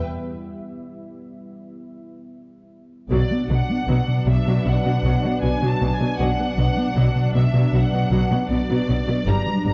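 Futuristic and brooding, this short cut from a longer hybrid orchestral and electronic film score opens with a deep, moody ambient pad sustaining dark, detuned chords on its own, its slow attack and long release softened by chorus and built-in reverb. At 3.1 seconds the full ensemble arrives as the harmony settles on a B minor chord. A lush violin section carries the melody from a distant, even place, while a close viola section adds expressive accompaniment with vibrato and portamento. Underneath, a smooth, gliding synth bass plays the most prominent line, a riff with a detuned sawtooth and triangle edge, a moving notch and sliding portamento, while the cello section sits in the background and the double bass section adds a soft-attacked, low foundation. The production is dark and enveloped in a wet scoring stage reverb that gives the strings a large, shadowy space.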